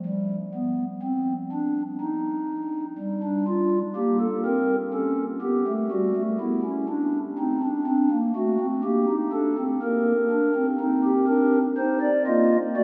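A pipe organ on a stopped flute stop carries this baroque-style four-part fugue alone, its hollow, mellow voice sitting up front and ranging from G3 to Eb5 with a romantic shading. The mood is contemplative and solemn, moving at a measured 61 BPM in 4/4 in C minor, with harmony settling onto Gm at 3.0 seconds and passing through A7, D and Gm/Bb before arriving on Cm at 10.8 seconds. A cathedral reverb with a 6.4-second decay surrounds the organ, and the passage is cut from a longer piece.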